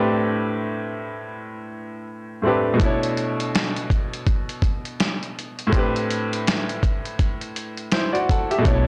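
Lo-fi hip hop at 82 BPM with a swung 16th feel and a nostalgic, melancholic mood, this excerpt opens on a bright, woody upright piano comping Am11 and Bm11 chords through cassette-tape haze, joined at 2.8 seconds by a dusty soul drum kit with a thumpy kick and gritty 12-bit sampler crunch, before a felt-muted piano note and a round, dark fingered bass slip in at 8.7 seconds, all set in light reverb on a dry, saturated hardware recording.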